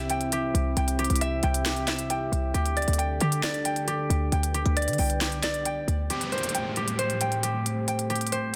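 A dense, heavily limited mix with light reverb carries this melancholic, dark trap excerpt at 135 BPM in a half-time feel in A minor, where fingerpicked concert harp arpeggios ring up front through tape echo over a deep, moody analog pad with chorus, while punchy, tight 808-style bass and a crisp trap kit with sharp snare, hi-hats and handclaps drive until the bass drops out at 6.1 seconds and an electronic downlifter enters for the close over an Am7 chord.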